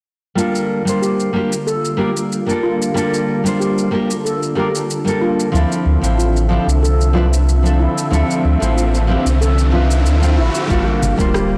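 This short fragment of sunset chillout opens at 0.4 s with an up-front, full-bodied nylon-string guitar fingerpicking an accompaniment through a low-pass filter and tape echo. Beside it, a silky vintage string machine holds slow-blooming chords with ensemble chorus and a filter sweep, while a shimmering steel pan played with soft rubber sticks traces mellow arpeggios in a boxy small room. A layered electronic shaker and rim click keep a straight, overdriven pulse as the harmony moves from Gm9 to Dm9. At 5.5 s a deep, round sine sub bass arrives up front, and an electronic riser builds until a punchy, overdriven kick lands at 10.7 s on the return to Gm9, with bright, saturated congas touched by soft hands very quietly just after. The smooth mood sits in a lush hall reverb, yet the whole recording is blown-out and overdriven.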